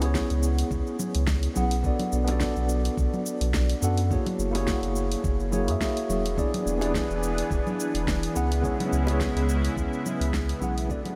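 A dreamy, reverb-soaked mix opens this wistful, warm stretch of sunset chillout, cut from a longer piece and moving at 106 BPM in 4/4 with a light 16th-note swing and tuning set to A4 = 439 Hz. A mellow, clean tine electric piano sits up front with a speaker-coloured tone and a diffuse ambient delay, carrying the chords C#m7, Bm7, F#9 and E7 before returning to C#m7. Beneath it, a deep, round sine sub bass holds long, sustained notes, while an electronic, knocking kick and a layered deep house kit of congas, hi-hat, shaker and a fat snare set the groove. High-tuned acoustic bongos with hard hands sit barely audible in the background. At 6.4 s a lush, thick unison pad of detuned sawtooth and square waves enters with a slow attack, chorus and a bright edge, before the whole recording fades out from 9.4 s.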